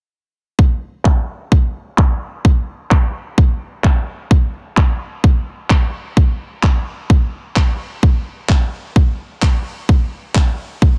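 This short passage of festival progressive house, cut from a longer piece, opens at 0.6 seconds with an electronic kick drum that sits up front and dominates the mix. The kick is layered and punchy, with a tape-warm character and the body of a large room. From 1.1 seconds, electronic handclaps join at a much lower level. They are layered and softly clipped, with low-pass filtering that dulls both their snap and their room sound. A filter sweep runs across the drums for the whole section. With little reverb and a dense, heavily limited master, the straight groove has a powerful, anthemic drive.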